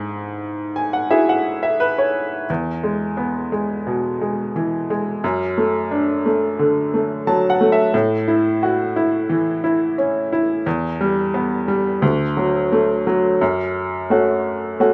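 A bright, woody upright piano sits up front in a light reverb, close enough that its action noise is audible and the sound feels intimate. This hopeful, nostalgic folk piece moves at a straight 88 BPM in 4/4, with the solo piano, tuned to A4 = 438 Hz, ranging from D2 to A5 and moving through chords such as E, D/F#, A6 and Em. Cut from a longer piece, it reaches a new section at 13.4 seconds on an F#m chord before ending at 14.9 seconds.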